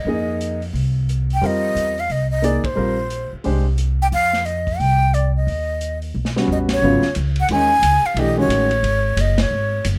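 A brisk swung 4/4 at 178 BPM drives this cool, intense modal jazz fragment in F dorian. A breathy, up-front flute carries the melody over woody pizzicato upright bass, a natural-sounding baby grand piano comping in short bursts, and a muffled, gritty vintage drum kit with dark cymbals, all in light reverb. Band accents punctuate the line, and a drum fill at 6.1 s sets up the shift to G# dorian at 6.8 s, as the harmony moves from F9sus4 through Eb7alt to land on G#m11.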